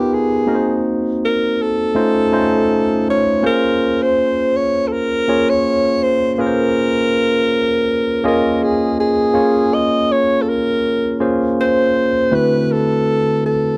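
A breathy alto saxophone with light vibrato, subtone and scooped notes carries a jazz-style solo melody up front, set against a bright, barky, lightly overdriven tine electric piano through a combo amp in this cinematic, bittersweet soul excerpt at 81 BPM with a gentle sixteenth-note swing, where chords like Cm7b5, F7b13 and Bbm9 move toward a D13 at 12.3 seconds, all captured in a dry, close 1970s-style small-room studio sound.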